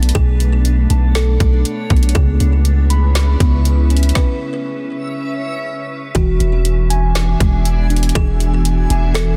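Hazy and spacious, this atmospheric cloud-rap excerpt sits in a half-time trap feel, with a clipped-kick trap kit of woody snare and metallic hats and a deep, mellow sine 808 bass held up front, breaking off into a stop from 4.2 to 6.2 seconds. Around them drift an ethereal detuned pad with ensemble chorus, reverb and sidechain pumping, dark felt-muted synth keys playing chorused, delayed arpeggios, and a soft, woody kalimba melody through digital delay. A dreamy reversed, granular swell shimmers underneath as the harmony moves from Bm7 to C#m7 and lands on E7 for the closing section, all under a dense, heavily limited modern master.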